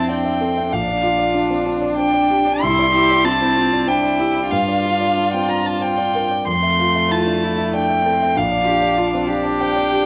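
A rubato 3/4 at 95 BPM sets a hopeful, tender mood in this neoclassical piano and strings excerpt in F major, moving through Fmaj7, Bb6, Cadd9 and Gm7 chords. A dark, woody solo violin carries the vibrato melody up front, high in its range, while a rich, airy-bowed sul tasto viola and a warm, softly attacked cello sit close beneath it, the cello tucked in the background with a gentle second line. A mellow, vintage concert grand with deep bass and audible action noise supplies intimate accompaniment throughout, all framed by a moderate spring reverb.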